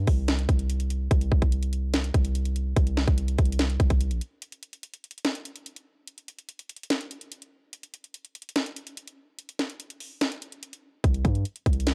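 A deep, boomy 808-style bass with a noise layer and fast, decaying attack underpins this menacing, eerie half-time trap excerpt at 145 BPM, dropping out at 4.2 seconds ahead of a break from 4.4 to 11.0 seconds while the electronic drum kit's hard-clipped kick, sharp snare and metallic hats carry on up front in a dry, gritty cassette-tape sound, the kick muted from 10.2 seconds until the bass returns at 11.0.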